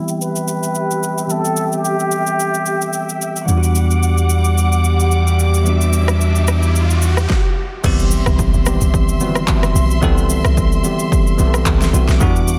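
Amapiano at 110 BPM with a lightly swung 16th feel, this late-night, hypnotic clip opens on a close-miked plunger-muted trumpet with a wah-wah tone and light vibrato, played through a low-pass filter and digital delay over a bell-like tine electric piano and lush, bowed studio strings that pump against the beat on Cmaj7 and Em9 chords, while an overdriven deep house kit with a punchy kick, fat snare, claps, rim clicks, shaker and crash sits up front. A sine sub bass with a pitch-drop attack carries the low end from 3.5 s as a filter sweep continues and an electronic riser builds, then after a brief stop the impact lands at 7.8 s, where a round, mellow FM log drum bass takes over. The dense, heavily limited mix carries a light reverb.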